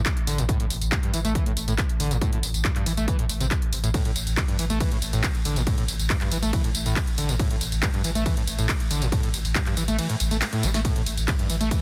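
A dense, heavily limited modern master with light reverb carries this dark, hypnotic slice of driving peak-time techno at 139 BPM in a straight 4/4. A heavy, tape-warm electronic kick and a layered techno kit of punchy snare, handclaps, warm hi-hats, ride cymbal and tambourine, both re-recorded in a small room, sit over a deep, thick sub bass on A1 with tube saturation, low-pass filtering and sidechain pumping. Up front, a screaming, squelchy sawtooth acid line between G2 and A3 snarls with resonant filter sweeps, distortion, lush chorus, tape echo and its own pumping, and the kick drops out from 10.0 to 10.8 seconds while a drum fill enters at 10.4 seconds.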